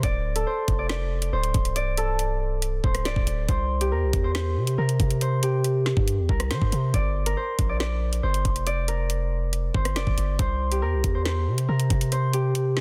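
A thumb-plucked, ringing Celtic harp melody, muffled by a low-pass filter, opens this ominous, cold drill fragment at 139 BPM in a half-time 4/4 feel in D minor, joined from the start by a deep, long-decaying sine 808 bass and an overdriven electronic kit of knocking kick, woody snare, rim clicks and bright hi-hats, all up front in a dry, dense, heavily limited mix as the chords move from Dm to C5 to Gm and back to C5.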